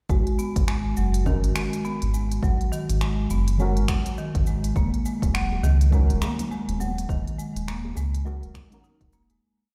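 A round, dark analog bass pumps under a woody marimba loop that drifts against the bar, with a soft punchy kick, smooth hats, snaps and shaker, and a pure singing bowl holding a high note in the background, setting up a mystical, earthy downtempo groove where sparse, phased chord stabs echo from 1.2 seconds, ringing bongos and congas join at 5.2 seconds, and the whole piece fades out from 6.3 seconds in a stone room.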